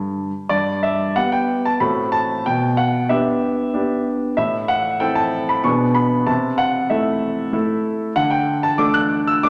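A clear baby grand piano sits up front in a wet recital hall, its polished tone carried by a generous reverb that lingers about 1.6 seconds. This is a short cut from a graceful, cheerful classical-period sonatina in G major, moving at 94 BPM in a straight 3/4. The solo piano plays throughout the 9.5 seconds, spanning from G2 up to F#6. Its harmony moves from G through diminished passing chords and G/B into A minor and Am/C, arriving on an open D5 at 8.2 seconds. The instrument stays present and close while the hall adds a soft halo around each phrase.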